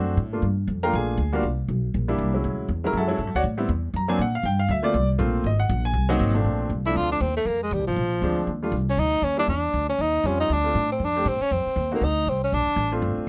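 Relaxed and playful, this excerpt of small-group swing and bop moves at a brisk 238 BPM in 4/4 with a swung feel in B-flat major. A natural-sounding grand piano comps through rich extended chords while a woody, thumpy pizzicato upright bass sits up front beneath it. At 6.9 seconds a warm tenor saxophone takes the solo melody with light vibrato, soft attacks and scooped notes, all captured by close, detailed microphones in a light reverb.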